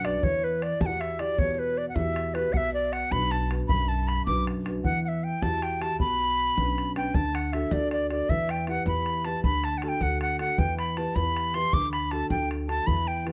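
Rollicking and bright, this Celtic jig in 6/8 is cut from a longer piece and opens in a minor mood before moving to a major-key passage at 7.1 seconds. An up-front wooden flute carries the melody with an airy, tongued, straight tone set in plate reverb, while a dark, mellow baby grand piano with audible action noise supplies intimate, vintage-sounding accompaniment. Beneath them, a thumpy, woody pizzicato upright bass and a damped, tight bodhran in a small room drive the rhythm, all in a light reverb.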